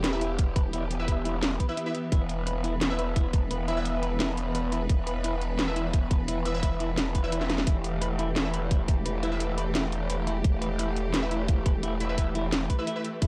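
Dry, close production with a murky, shadowy tone frames this 13.3-second cut from a longer dark technical drum and bass track, set in E minor at 173 BPM in a straight 4/4 and holding on an E minor chord throughout. A tight electronic kick enters at 0.4 seconds and sits furthest forward, while the kit adds a cracking snare and metallic hi-hats, with a drum fill at 7.4 seconds. Beneath them a growling, wobbling bass on a low E is saturated, compressed and thickened with chorus, sounding aggressive and bright. A distant, lush string section holds sustained chords with smooth vibrato and pumps against the beat. Bold, punchy synth stabs with a detuned sawtooth edge are coloured by phaser, built-in reverb, delay and 12-bit grit. In the background a clean semi-hollow guitar plays arpeggios through a low-pass filter sweep, delay and gritty sampler texture, adding to the tense mood.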